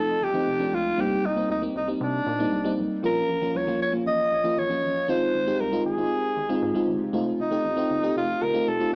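A raspy alto saxophone carries the melody up front, its gritty, vibrato-laden tone set against the soft haze of a cassette-tape recording. Beneath it, an FM electric piano layered with a soft pad supplies lush, dreamy accompaniment, colored by chorus and phaser and sitting close alongside the horn. A rubbery square-wave bass stays dark and in the background, giving a bouncy, hollow pulse to the bottom end. This short cut from a longer piece of 1980s-style pop moves at 117 BPM in a straight 4/4, running about 8.9 seconds through chords of F7, Cm7, Bbm and Ab6 before returning to F7 at 7.1 seconds. A wet small-room reverb and the small-speaker sound of a home cassette recording lend the whole a romantic, nostalgic glow.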